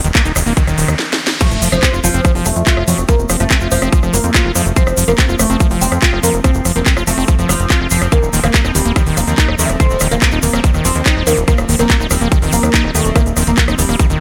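A tight, up-front electronic kick drives this fragment of driving, alien psychedelic trance, joined by a layered drum kit with cracking snare and crisp hats, a grainy egg shaker, a punchy, funky analog bass and a squelchy, distorted acid bass riff carrying dub echo and sidechain pumping. A background riser and sub drop lead into the drop at 1.4 s, where a woody, fretless oud enters with the melody through phaser and delay, while a very quiet, detuned blip pluck adds a second line from 1.9 s. Underneath, a pulsing gated texture holds sustained chords with chorus.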